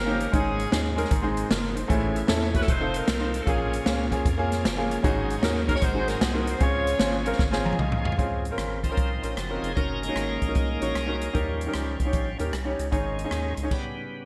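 A clear, punchy saxophone section opens this soulful, uplifting uptempo gospel excerpt in Db major, carrying the melody with a distant, roomy sound and a touch of delay over a rubbery, bouncy square-wave bass and an up-front, natural grand piano. A swinging big-band drum kit joins almost at once at 153 BPM in 4/4 with a swung eighth-note feel, its punchy kick, medium-tuned snare, hi-hat, rim clicks, toms and crash cymbal sitting polished and airy with gated reverb. Shortly after, a bright tonewheel organ adds sustained chords, lightly overdriven with key click and a slow rotary speaker. The saxophones drop out at 7.4 seconds as drum and piano fills lead into the organ's full, shouting solo from 8.2 seconds, moving through chords like Gb6 and Eb7. A stop at 13.7 seconds cuts the band off while the organ rings on briefly, all framed by a lush hall reverb and a bright 1980s-style digital production.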